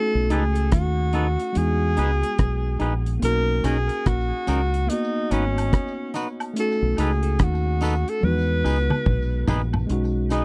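Lovers rock reggae with a tender, romantic mood, led by a breathy, whispered tenor saxophone with scooped notes and vibrato, sitting up front with tape echo over a worn, slightly out-of-tune tine electric piano that also carries tape echo. A round, dark fingered dub bass and a dry, deep reggae drum kit with a tight kick anchor the groove, while a clean, twangy electric guitar adds up-front stabs and a drum fill arrives at 8.2 seconds. Tambourine and woodblock enter at 3.6 seconds in the background, and the whole piece has the close, dry feel of a 1970s studio recording.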